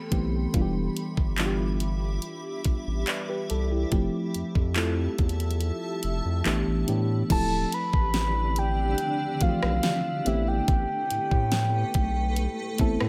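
A smooth, electronic R&B drum kit sets a straight 71 BPM groove in 4/4, its knocking kick, fat snare, rim click, handclaps, hi-hat and crash cymbal sitting up front beside a deep, saturated sine sub bass, with the kick muted from 5.6 to 7.3 seconds. In D dorian, a round, warbling FM electric piano with chorus and a bright, blurred granular cloud pad with built-in reverb and sidechain pumping carry a longing, moody progression from Am9 through Fmaj9 and A7sus4 to Dm11. At 7.3 seconds a soft, octave-layered triangle synth lead with vibrato, chorus and tape echo takes the melody, all set in a lightly reverberant space in this contemporary R&B piece.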